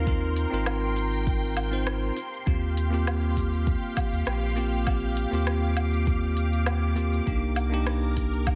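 Relaxed and smooth, this 100 BPM sunset chillout piece, cut from a longer track, sets a bell-like tine electric piano with tape echo up front over a lush, detuned sawtooth pad treated with chorus and phaser, a round sine sub bass, a deep electronic kick and a deep house kit of smooth hats, cabasa, rim click and woodblock, the kick and kit entering at 0.1 seconds, all moving through Ab69, Eb69 and Cm9 in light digital ambience with a dense, heavily limited modern master.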